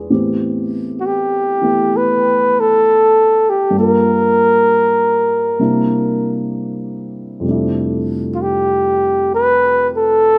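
A moderate plate reverb with a 2.8-second tail surrounds this short excerpt, giving it a late-night, romantic glow. It is a slow jazz ballad at 65 BPM in 4/4, with a gentle swing on the eighth notes. A dark, woody upright piano opens at 0.0 seconds as accompaniment, its long sustain ringing up front across a range from F2 to D5. At 1.0 seconds a mellow flugelhorn enters as the solo voice, carrying the melody in a narrow span from F4 to B4 and sitting slightly above the piano in the mix. The harmony moves from Am9 through Gm7 and C9 before settling on Fmaj13, lending the passage a tender, unhurried feel.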